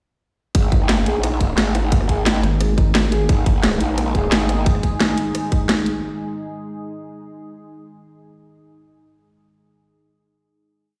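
Heard through a lush hall reverb and played back on a big sound system in a bare stone room, this short, complete piece of dark technical drum and bass runs at 175 BPM with an aggressive, mechanical mood, driven by a tight, overdriven electronic kick and a kit of cracking snare, rim clicks and bright closed hats. A growling, detuned bass with chorus and sidechain pumping carries modulated wobble phrases, while a nasal vowel-sweep wobble bass cuts in at 2.4 s and a soft, felt-muted upright piano loops a six-step arpeggio that drifts against the bar, colored with dub echo. From 3.9 s a deep, moody sawtooth pad with a sub octave and slow attack spreads sustained chords to the close at 6.0 s.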